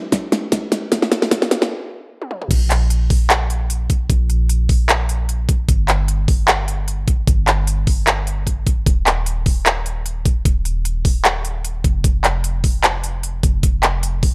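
Future bass at 151 BPM in a half-time 4/4 with a light 16th-note swing, this bright, euphoric passage from a longer piece opens with a short build-up and drum fill. It pauses on a stop from 1.7 to 2.5 seconds before dropping into the main section at 2.5 seconds. Up front, a knocking, tape-warm electronic kick and a layered pop kit of fat snare, crisp hi-hats, handclaps, toms and crash cymbal ride over a deep, boomy 808-style sine bass with a noise layer and sidechain pumping, all set in light reverb.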